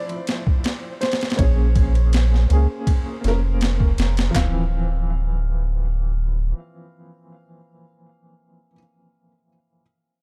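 A dark, woody upright piano with tremolo and tape echo opens this smoky, hypnotic trip hop fragment beneath a soft, felt-muted piano melody with tape echo in the background and a faint flickering, grainy texture, while a gritty, overdriven boom bap drum kit of thumpy kick, high-tuned snare, handclaps and ride cymbal sits up front from 0.1 s to 4.5 s, and a deep, round dub sub bass enters at 1.4 s as the chords move from Dm7 to Bbm7 and back.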